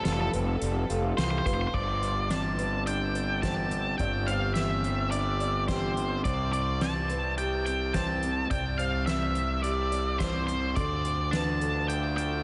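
Soaked in a huge ambient reverb, this dreamy excerpt from a longer post-rock piece feels melancholic yet cathartic. Up front, a dark octave-fuzz lead guitar carries the melody through distortion and analog delay, over a fuzzy, overdriven fingered electric bass. Behind them, an electric guitar through a small old amp picks slightly broken-up, lo-fi arpeggios with analog chorus and delay, while a felt-muted upright piano adds soft, intimate arpeggios with its action noise audible. A soft-mallet drum kit plays in a big room, with a boomy kick, a fat snare and shadowy cymbals. A very quiet, smooth symphonic string section holds bowed chords only until 1.7 s and returns at 10.7 s, as the harmony moves from Fadd9 through Gsus4 and Csus2 to Dm.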